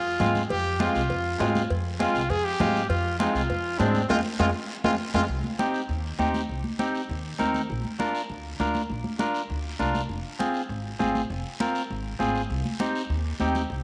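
Fiery and passionate, this short cut from a longer cumbia piece runs at a brisk 200 BPM in a straight 4/4, moving from F minor through C minor and B-flat. A bright, present trumpet with light vibrato carries a second line up front until about 5.2 seconds, alongside woody pizzicato upright bass, a clean, fingered electric guitar, bright high-tuned congas struck with hard hands, a raspy guiro, and ringing cowbell and timbales set in the background. A drum fill and band accent at 4.1 seconds lead into the second section, where the trumpet, cowbell and timbales drop away, all bathed in a wet echo-chamber reverb.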